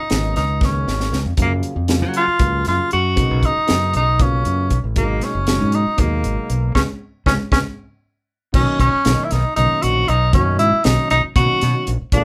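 Recorded live in one room with a moderate ambience, this bright, funky electric jazz fusion excerpt moves at 235 BPM in a straight 7/8, as a jazz-style tenor saxophone with light vibrato and scooped notes leads up front in a roomy, distant tone over a warm concert grand piano with deep bass, a direct, modern fingered electric bass and a dry, up-front funk kit with a high-tuned snare and tight kick, the band striking an accent at 6.8 s before drum and piano fills carry it into B major at 8.5 s.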